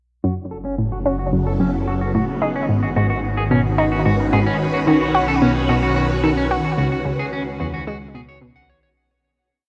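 Hypnotic and mysterious, this brief piece of ambient, sequencer-driven space music moves at 110 BPM in F# dorian, cycling through F#m, G#m7, B and C#7(no3) inside a huge, wet reverb with a 7.0-second tail. A nasal, wave-folded analog pluck repeats a 5-step riff that drifts against the bar, while a clean, hollow-body semi-hollow electric guitar picks a 7-step arpeggio loop through a filter sweep and delay. A swirling, vintage phased string machine fades in with slowly shifting chords from 1.0 s, over a sustained, evolving analog drone bass built on pulse-width and ring modulation, before the whole piece fades out from 6.1 s to 9.0 s.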